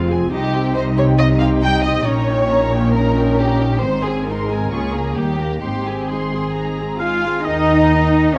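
A moderate concert hall reverb surrounds this short cut from a longer classical-period orchestral movement, lending the quick, dramatic and restless music a sense of space. Muted violins carry the melody in the background with a veiled, smooth tone, while a second muted violin line sits more lushly alongside it. Con sordino violas and cellos supply accompaniment and bass from further back, and the double basses sit up front with a dark, soft-edged bowed sound. A mellow, tight French horn section holds sustained chords as the harmony moves from C minor through E-flat seventh to A-flat. Near the close a punchy oboe enters at 7.0 seconds, followed at 7.5 seconds by a very quiet clear clarinet, an airy flute group and a vintage-toned bassoon, all playing until the end at 8.4 seconds.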